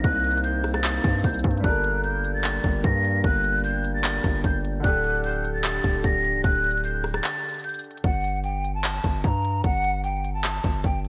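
A half-time trap groove drives this brooding, dark hip hop excerpt, with an up-front electronic kit of hard-clipped kick, crisp hi-hats, handclaps and rim clicks treated with gated reverb, under a heavy, aggressive distorted 808-style bass with a fast attack. A breathy jazz flute carries the melody with vibrato, a soft attack and an unsteady tone through delay and a low-pass filter, while a mellow, close-miked French horn section holds sustained chords and an intimate concert grand piano with audible action noise sits in the background; both drop out at 8.0 and 8.1 seconds, following a short break at 7.2 seconds. The bright, 1980s-style digital production adds light reverb, and the closing stretch leaves flute, bass and drums over a Gsus2 chord.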